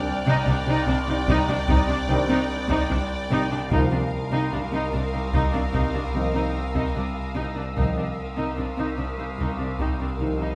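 Cinematic suspense film score in an uneasy, tense 5/4, cut from a longer piece, where rich, lush bowed violin sections carry a high melody and second line over clear violas, background cellos and double basses, and a nasal, resonant drone with moving overtones, chorus and its own reverb, while a distant, smooth violin layer sits far above. A taiko ensemble struck with hard sticks enters at 1.3 seconds, and mellow French horns and clear trombones add sustained chords from 2.1 seconds, joined by a very quiet, ringing thumb-plucked harp. Round soft-mallet timpani sound briefly at 3.7 seconds as the harmony moves from Cmadd9 to Bbsus4/C, all set in a moderate scoring-stage reverb.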